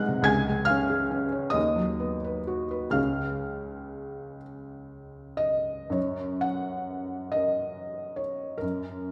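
A felt-muted upright piano, soft, mellow and intimate with audible action noise, sits up front in this serene, tender romantic nocturne excerpt in a rubato 6/8, its gentle chords settling onto F# at 6.0 seconds within the wet reverb of a recital hall.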